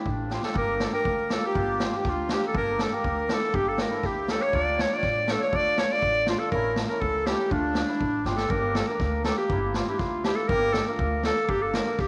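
A moderate echo chamber gives this soulful, bittersweet klezmer excerpt a roomy glow. At 121 BPM in a straight 2/4, a clear, close-miked clarinet sings the melody up front in a classical style, over a shimmering, ringing hammered dulcimer and a woody, thumpy pizzicato upright bass on gut strings, with the chords moving among D minor, G minor and A. A boomy, mid-forward street-band drum kit with a rolled-off top marks fills at 0.3 and 8.3 seconds, while a reedy, airy accordion with light tremolo tuning and tape echo adds a sweet second line in the background until 8.2 seconds.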